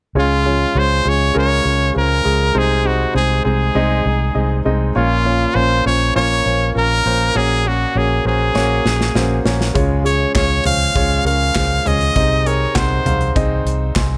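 A dry, close recording with a dark top end opens this short, uplifting slice of piano-driven pop in a straight 4/4. A brilliant, forceful trumpet carries the melody up front from the start, its vibrato giving the close-miked pop-style solo a hopeful lift until 13.4 seconds. Beneath it, an intimate concert grand piano supplies the accompaniment with deep bass, audible action noise and a short sustain, moving through a simple progression that settles back on its home chord. A vintage fingered electric bass, foam-muted, round and amped, holds down the low end with a punchy, shadowy tone. At 8.6 seconds a polished studio drum kit enters with a fill, then carries on with a punchy kick, medium-tuned snare, hi-hat and handclaps in an airy small room.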